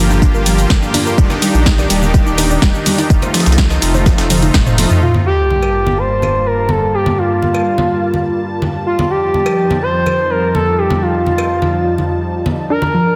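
Opening on a lush, thick unison pad with a bright phased shimmer, a soft round pluck arpeggio under a filter sweep, smooth supersaw stabs and a deep analog bass, each pumping to the sidechain, this driving, emotional progressive house cut at 125 BPM in G minor layers an overdriven electronic kick, a punchy house drum kit with tape-warm filtered hats, gritty, very quiet sampler-style breakbeat drums and ringing live congas and cowbell; then, after a drum fill, the kick, bass, supersaw, pluck and breakbeat kit fall away near 5.0 s for an impact and electronic sub drop as an expressive, up-front portamento lead with vibrato sings over Gm7 and F7 in a moderate hall reverb until 13.2 s.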